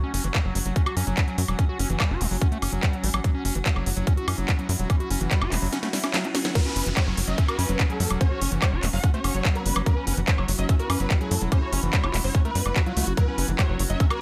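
A straight 4/4 pulse at 145 BPM drives this psychedelic, driving psychedelic trance excerpt, where an up-front electronic kick and a techno drum kit with cracking snare, smooth hats, handclaps, woodblock and crash sit over a tight, punchy sequencer bass and a squelchy, gritty overdriven acid bass riff with tape echo, while an overtone-sweeping drone and a cloudy granular pad hover in the background, a very quiet riser and downlifter runs from 5.0 to 9.9 s, and after a drum fill the drop arrives at 6.6 s with a swarming, aggressive, detuned rave lead carrying the melody.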